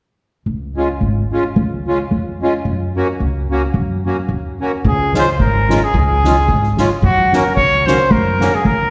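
A swung 2/4 lilt at 110 BPM drives this festive, jolly stretch of alpine dance-band folk in Db major, moving between Db and Gb chords. A woody, pizzicato upright bass with steel strings opens at 0.5 seconds, sitting up front, and is joined at 0.8 seconds by a reedy, up-front accordion whose slow beating and airy tone carry a slapback echo. At 4.8 seconds a soft-mallet drum kit joins, heard distant and roomy with dark cymbals, a fat snare, a punchy kick and a rolled-off top. Moments later, at 4.9 seconds, a bright trumpet takes the solo melody in a classical style with vibrato, placed up front yet also sounding distant, with its own slapback echo. The whole has the feel of a live gig heard through the venue's PA, with moderate plate reverb and a recital-hall ambience, and it is cut from a longer piece.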